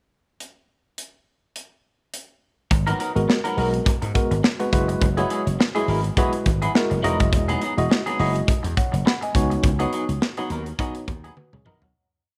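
Late-night and danceable, this short early-eighties boogie funk piece moves at 104 BPM in 4/4 with a light swing on the sixteenths. A polished, airy studio drum kit opens alone with a pickup bar, its punchy kick and medium-tuned snare sitting up front in a mid-tempo boogie beat alongside hi-hat and toms. At 2.7 seconds, a fat, amped slap bass joins with a syncopated boogie line full of muted ghost notes, together with a twangy, scooped clean electric guitar playing a choppy sixteenth-note riff under a lush chorus. A worn, slightly out-of-tune tine electric piano enters at 3.2 seconds, shimmering with fast tremolo through a combo amp as it adds syncopated drop2 chord stabs and short fills. The harmony moves from G#m9 through F#9sus4 and Emaj9 to C#9sus4 under light studio reverb, and the piece fades out while the drums close with a fill at 11.4 seconds.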